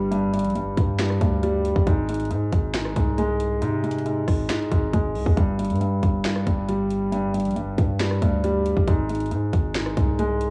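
A half-time trap beat at 137 BPM drives this dark, brooding hip hop fragment, where a trap drum kit with a hard-clipped kick, sharp snare, metallic hats, rim clicks and finger snaps sits up front beside a mellow, vintage-toned baby grand piano, filtered and tape-worn, moving between G5 and Ab chords over a heavy, distorted 808-style bass with a fast attack and a gritty noise layer, all in a dry, close small-room home recording on cassette.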